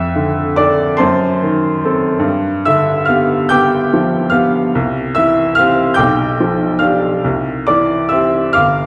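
A romantic classical nocturne for solo upright piano, tender and nostalgic, unfolds in a flexible, rubato 12/8 from the deep bass to the high treble, its woody, polished tone ringing with long sustain up front while a wet recital-hall reverb places the listener further back in the room, as the harmony drifts from Dm/F through F#dim7 and G7 to settle on C in this brief cut from a longer piece.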